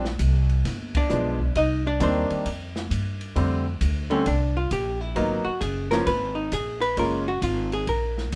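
Piano, upright bass and drums open this relaxed small-group swing and bop excerpt together at 133 BPM in 4/4, with a swung eighth-note feel. The clear concert grand sits up front in an intimate, polished comping role, its action noise audible, while the woody, thumpy pizzicato bass on gut strings carries the low end. The drum kit, sitting lower in the mix, gives a smooth small-room sound with dark cymbals, a medium-tuned snare and a boomy kick across hi-hat and ride. After a band accent at 0.9 seconds, the miked hollow-body archtop guitar takes the melody at 1.0 seconds, its clean, picked tone dark and forward. The harmony moves from Bbsus2 through G7b9 and Cm7 into a richer second section built on Bbmaj13, Abm7 and Gbmaj9. The piano drops out at 7.2 seconds, leaving guitar, bass and drums to close in light reverb.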